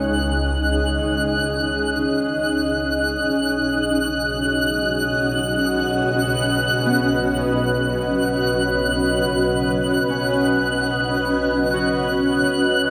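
Floating in free time, this serene ambient fragment in B major drifts from C#sus2 to Badd9 at 3.3 seconds, all of it bathed in a long cathedral reverb. A cloudy, detuned granular pad holds sustained chords up front, joined by a twinkling FM granular texture with an octave-up shimmer that sparkles high above. Beneath them, a fingerpicked Celtic harp rings out arpeggios through a delay in the background, while a lush bowed double bass section with vibrato fades out across the whole 12.9 seconds.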